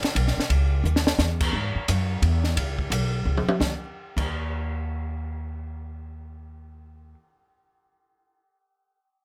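Spiritual and hypnotic, this cut from a longer modal jazz piece swings at 174 BPM in 3/4, pairing an up-front, woody, thumpy pizzicato upright bass with a compact cocktail drum kit of punchy kick, high-tuned snare, toms, hi-hat, and dark crash and ride cymbals, whose dry fills arrive at 0.8 and 3.3 seconds before the drums stop at 4.2 seconds and leave the bass alone in light reverb until 7.1 seconds.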